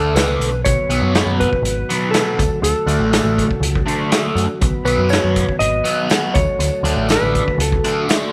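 A dark, clean lap steel guitar carries the slide solo in this hazy, kaleidoscopic psychedelic rock excerpt at 121 BPM, its tape echo sitting above a bright, double-tracked fuzz guitar riff treated with distortion and phaser. A round, deep dub bass and an up-front vintage drum kit, with a punchy kick and rolled-off top in a pumping small room, hold a straight 4/4 feel alongside a faint, jingly tambourine. A mellow, flute-like tonewheel organ enters at 0.6 seconds with sustained chords through a slow rotary speaker in the background, as the harmony moves between D5, B and D.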